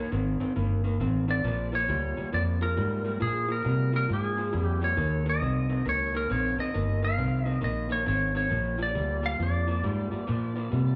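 A bright, twangy clean lap steel guitar carries the slide melody up front with volume swells and slapback echo in this rollicking, soulful electric blues shuffle at 136 BPM in Bb mixolydian, over a dark, slightly broken-up riff from an electric guitar through a small old amp with its own slapback echo and a round, foam-muted vintage fingered electric bass that enters at 0.1 s, heard live through a club PA with light reverb in an 11-second cut from a longer piece.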